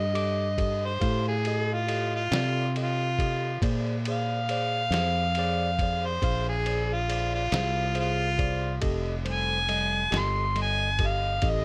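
An amplified, overdriven harmonica takes a soloing turn up front, its gritty jazz-style lines full of tongue slaps and scooped notes. This swaggering, soulful slow blues in 12/8 is a short piece cut from a longer performance, moving from F9 to Bb9 at 3.6 seconds and back to F9 at 8.8 seconds. Underneath, a barky overdriven tine electric piano played through a combo amp fills in the accompaniment, colored by a phaser. A fingered electric bass sits up front with a round, growly, punchy tone, played direct and amped. From 0.2 seconds a lo-fi sampler-style drum kit joins, compressed, pitched down and muffled, with a thumpy kick, a medium-tuned snare, ride cymbal and a tape-warm haze. The sound is dry, with little reverb.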